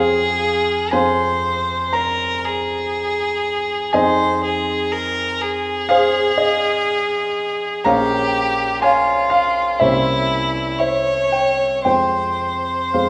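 A solo violin and a concert grand piano begin together in this elegiac, yearning romantic excerpt, the violin singing a clear, focused melody with vibrato while the piano's deep-bassed, polished accompaniment supports it. The slow, rubato phrasing in 4/4 moves through minor harmonies toward a tense dominant chord before settling home by 11.9 seconds. A generous scoring-stage reverb surrounds the duo, giving the violin a slightly distant glow.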